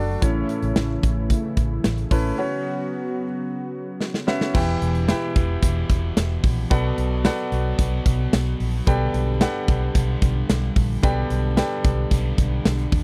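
A dry, close 1970s-style studio sound frames this moody, dramatic 1980s-style pop fragment at 111 BPM in straight 4/4, tuned to A4 = 445 Hz, where an intimate concert grand with audible action noise and a dark, round, foam-muted electric bass play throughout, a bold brassy analog pad with chorus holds sustained chords until 4.5 s, an up-front rock kit with a punchy kick, bright cymbals and tambourine enters at 0.2 s and plays a fill into that point at the close of a break, and a crunchy overdriven guitar bathed in lush chorus joins from 4.5 s as the chords move from A and F#sus4 to Em, Bm7 and Gadd9.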